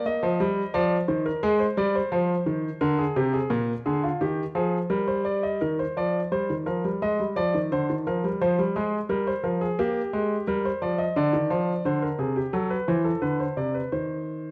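A solo concert grand piano opens this lively, elegant baroque-style invention in an even, straight 4/4, heard as a short cut from a longer classical piece. The instrument sits up front and intimate, with deep bass, long sustain and the faint action noise of the keys caught by close, detailed microphones. Its writing spans Bb2 to Eb5, moving through graceful progressions such as Fm7 and Bb7 before a new passage begins at 5.6 seconds. From 11.2 seconds the harmony turns more shadowed, passing through Dm7b5, Am69 and Csus2 to settle on Cm. A moderate recital hall reverb gives the natural tone a sense of space around its clear detail.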